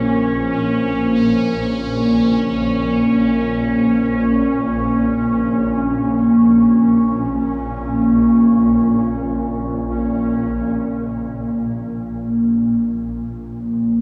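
From the first moment, a deep, full-bodied pad holds a sustained Bbmadd9 chord in Bb minor, over a swarming, up-front drone that sits low in the register and a bubbling, resonant texture whose filter steps at random. This is ominous, desolate dark ambient music in free time, tuned to A4 = 437 Hz and cut from a longer piece. The pad is moody and dark, built from detuned sawtooth and sine tones with a sub octave and chorus. The drone is tense and evolving, its wave-folded, granular tone blooming from a slow attack into long sustain. The bubbling texture drops out at 10.5 seconds, leaving the pad and drone to carry on together to the close at 14.0 seconds. Everything sits in a vast, echoing space, washed in a huge reverb with a 7.3-second tail.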